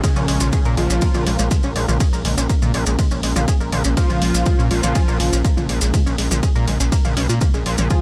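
A dry, echo-heavy mix opens this dark, cinematic melodic techno excerpt, where a thick, detuned unison lead with chorus, vibrato and analog delay carries the melody above a fat, nasal polysynth second line, a sweeping resonant pad holding a Bbm7 chord in the background, and a tight sequenced synth playing mellow arpeggios through chorus and phaser, all pumping against a tape-warm electronic kick, a punchy analog drum machine with hi-hat, ride cymbal and toms, and grainy, vintage maracas, while a gritty, saturated, wave-folded synth bass sits up front from 0.2 seconds.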